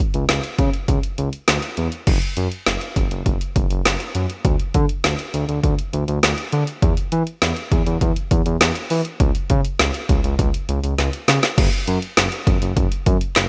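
Melancholic and nocturnal, this synth-pop fragment moves at 101 BPM in a straight 4/4, cut from a longer piece and built on just a smooth, nasal sawtooth synth bass and an electronic deep house drum kit that run together from start to finish. The bass sits up front with a fast attack, sustained notes and a touch of vibrato, while the layered, tape-warm kit pairs a punchy kick and woody snare with hi-hat, handclaps and crash cymbal. A drum fill at 11.0 seconds ushers in the closing passage, all framed by light reverb and bright 1980s-style digital production.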